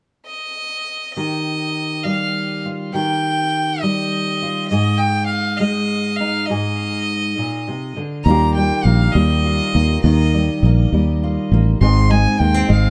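A dark, lightly reverberant production frames this short cut of hopeful, anthemic indie folk in Eb major, moving in a straight 6/8 at 68 BPM, counted in dotted quarters. A single bowed fiddle opens the melody at 0.3 seconds, its clear, nasal tone carrying a light vibrato and an earthy edge, treated with a tape echo and holding a slightly distant air. At 1.2 seconds a fingerpicked steel-string acoustic guitar joins underneath, its auditorium-bodied sound warm and up front as the harmony settles on Ebadd9 before shifting to Ab5. The arrangement builds at 8.3 seconds, when a fingered electric bass arrives with a round, foam-muted tone that feels direct and amped, anchoring the return to Ebadd9 and the move to Ab. By the close, the three parts stack into a fuller, more uplifting texture while the fiddle still leads.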